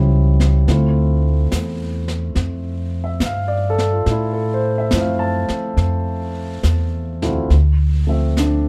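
A woody, thumpy upright bass with gut strings sits up front in this wistful, melancholic jazz ballad in D minor at 70 BPM with a swung 4/4 feel, alongside a concert grand piano with deep bass that voices a rootless A7b13 moving to Dm9, while a brushed drum kit with snare and hi-hat enters at 0.4 s in a dry, dark-toned recording cut from a longer piece.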